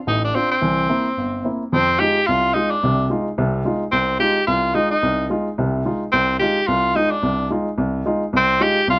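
A tenor saxophone and a baby grand piano enter together at 0.1 s in this brief fragment of a longer jazz performance, swinging at a brisk pace in four. The saxophone carries the melody up front as a solo voice, its clear, vintage tone shaded by vibrato and scooped notes that give the line a searching, hypnotic quality. Beneath it, the piano supplies accompaniment with a warm, natural sound that reaches from deep bass notes up into the middle register. The harmony moves from Dm7 to C7 before settling on Fm7 at 1.7 s, where the second part of the passage begins and runs until both instruments stop at 9.0 s. The recording is dry and intimate, captured with close, detailed microphones that also pick up a faint mains hum.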